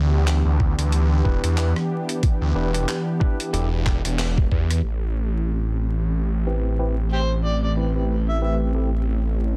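Glitch hop with a playful, swaggering swing, cut from a longer piece, where a thick, swirling phased saw bass sits up front under a smooth, warbling analog pad with chorus and sidechain pumping, gritty, pitched-down sampler drums with handclaps, hi-hat, rim click and a thumpy kick drop out at 4.8 seconds as the chords move from Em7 to Am9, a worn, slightly out-of-tune tine electric piano stabs through low-pass filtering and digital delay, and an overdriven, amplified harmonica with scooped notes and tongue slaps takes a brief jazzy solo from 7.1 seconds, all in a dense, heavily limited mix with light reverb and vinyl crackle.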